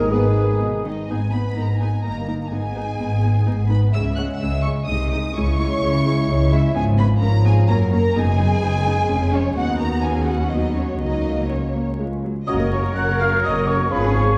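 Graceful and lively, this quick classical-period movement for symphony orchestra moves in 3/4 at 127 BPM, opening in G# minor and settling into F# major from 6.8 s. A close, expressive violin section carries the melody with vibrato, while a second violin section adds a smooth, even line beneath it, and violas in the background supply bowed accompaniment. The cellos are the most prominent part, focused and lush, and together with the double basses they anchor the bass as French horns hold soft-attack sustained chords from a distance. A dark trumpet section sounds stabs only at the very start, where the woodwinds also appear briefly. The winds return at 12.5 s for the closing stretch: a pure, hollow flute, a clear oboe, a very quiet clarinet and a vintage-toned bassoon. The whole passage is heard from further back in a reverberant scoring-stage space, with vinyl crackle, and it is cut from a longer piece.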